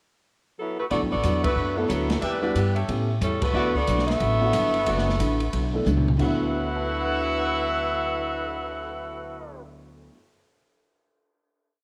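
A bright saxophone section leads this short, energetic big band swing piece at 182 BPM in D major, carrying a motif-based melody in four-part block voicing with light vibrato, while a warm trumpet section adds syncopated stabs with band accents at 1.4 and 3.4 seconds. An up-front, woody upright bass walks beneath a picked steel-string acoustic guitar playing jazz chord shapes and a grand piano comping with rootless voicings in the background, as an open jazz drum kit with dark cymbals and a boomy kick drives a ride cymbal pattern and plays a fill just before the final chord at 6.2 seconds. Light reverb and the warble of worn old cassette tape give the whole piece a drifting, vintage character.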